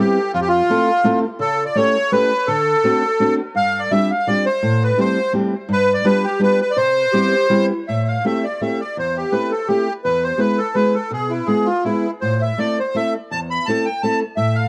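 A musette waltz in 3/4 at 167 BPM, this nostalgic, whirling fragment cut from a longer piece sways with a lilting swing and a rubato push and pull, moving from C major into A minor at 7.9 s. Up front, a reedy, sweet accordion with light tremolo tuning carries the melody, close-miked, dry and full. Beside it, a fingerpicked steel-string acoustic guitar supplies a dark accompaniment from the low register, with audible finger squeak. Just before the shift to the minor key, a mellow clarinet slips in from the background for a brief second line between 7.1 and 7.8 s, its subtone colored by light vibrato and scooped notes in a vintage jazz style. Moderate studio reverb surrounds the instruments, and the whole recording carries the worn, warbling pitch drift of old cassette tape.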